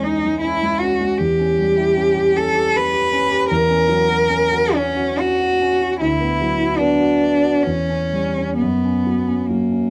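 Classical romantic chamber music for cello and grand piano, this short passage cut from a longer piece carries a yearning, melancholic mood. It moves in 3/4 at a flexible 63-80 BPM, with rubato letting the phrases breathe. The bowed cello carries the melody from start to finish in a rich, close, expressive voice, colored by vibrato and portamento. Beneath it, the concert grand plays accompaniment throughout, its deep bass giving weight while the cello sits louder above it. The harmony drifts from C#m/E through C#dim/E, F#7/E and Bm/D, returns to C#dim/E, and then settles on F# at 8.6 seconds. Moderate studio reverb and a dark, warm production wrap the duo in an intimate, shadowed sound.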